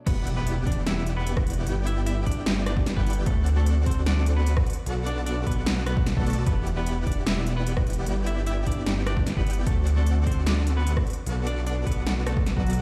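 An impact opens this short future bass drop, cut from a longer piece, as every part enters together at 150 BPM in a half-time 4/4 feel in G major, cycling through Em9, G6, D7 and Bm7 with a lush, playful mood. A clean, bright semi-hollow electric guitar carries the melody with tape echo, over huge detuned supersaw chords roughened by vintage 12-bit sampler grit, while a thick, saturated detuned saw bass with chorus sits up front, and all three pump with sidechain compression alongside the punchy electronic kick. The big-room dance kit adds crisp high-passed hats, rim clicks, crash and a punchy snare, all heard as if played through a big sound system in a bare stone room.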